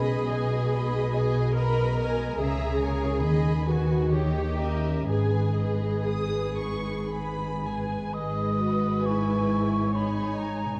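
A bowed violin section carries the melody with smooth vibrato, while a second violin section adds a lush, expressive line with portamento, in this serene classical excerpt in G# minor, moving in a rubato 3/4 at 55-74 BPM. Rich violas, focused cellos and double basses fill out the harmony and bass beneath a ringing, thumb-plucked concert harp playing arpeggios in the background. A mellow, hollow silver flute joins the second line at 7.1 s, all set in a dark, warm production with the wet bloom of a recital hall.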